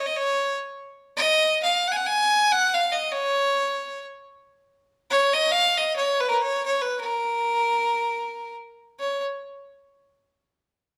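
A lone bowed fiddle sits up front in this exuberant, wild stretch of Balkan folk, its clear, earthy tone lightly touched with vibrato as it plays in free time between A#4 and G#5. The single player carries the music from 0.0 s until 9.2 s, just after a new section begins at 9.0 s, in a live one-room take with a moderate, large studio reverb.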